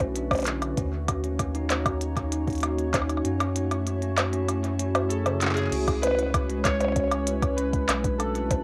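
IDM at 97 BPM in C# minor, this intricate, eerie excerpt sets a glassy, ethereal FM pad's slow-blooming chords and a bell-like tine electric piano's delayed arpeggios over a round, deep analog bass, a soft electronic kick that drops out from 3.2 to 5.7 seconds, and an up-front glitchy kit of clicky hats, handclaps, crash and percussion blips, while the harmony moves through Bm7, D#m7, F#m7 and C#m7 and warbly, nostalgic lo-fi synth keys with detuned chorus, phaser and tape echo carry a melody from 5.1 seconds, all in a rough home-demo mix with moderate studio ambience.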